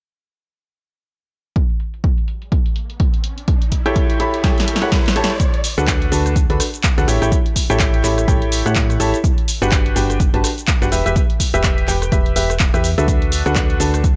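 Joyful and uplifting, this piano house cut at 125 BPM in D major rides a swung 16th-note feel, opening at 1.6 s with a punchy, up-front electronic kick and an analog drum machine of handclaps, hi-hat, rim click, shaker and snare, all under a filter sweep while a background riser and a drum fill build toward the 5.4 s change. A bright, woody upright piano with audible action noise and a slightly detuned, worn character enters at 3.9 s carrying the riff, with sidechain pumping and dub echo, over chords moving from A7 to D6, Gmaj7 and Em. A round, dark FM bass with a fast attack then anchors the low end with its own sidechain pumping, and a digital ambience surrounds the mix.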